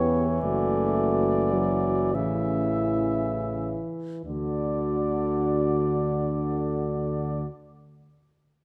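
Set in a moderate recital-hall reverb, this serene, lyrical excerpt of a hymn-like classical brass band piece in a rubato 6/8 slows over its first 4.3 seconds as a mellow cornet with vibrato sings the melody above a French horn section's lightly vibrato second line, a brilliant, distant trombone and a smooth-topped euphonium in the background accompany, and a punchy tuba sits up front on the bass, passing through D/F#, A and D chords.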